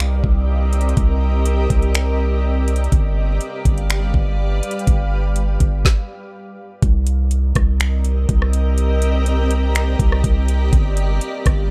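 A deep, mellow 808-style bass with a fast attack and long decay sits up front in this spacious, melancholic cloud-rap excerpt, holding low notes under a half-time groove that moves between Cm7 and G7. An electronic R&B kit, also up front, pairs a knocking kick and woody snare with metallic hi-hats, rim clicks and finger snaps. Behind them, a blurred, evolving granular pad breathes in slowly with its own reverb and sidechain pumping, and a brief stop at 5.8 seconds sets up the second passage at 6.8 seconds.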